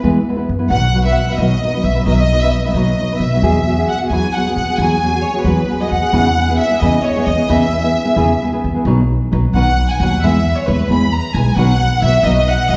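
In a straight 6/8, this proud, festive mariachi fragment sets a rich, smooth violin section with vibrato up front over dark fingerpicked nylon-string guitar and woody, thumpy pizzicato upright bass, all three playing throughout, heard from further back in a recital hall with a lingering reverb as the harmony shifts at 8.9 seconds.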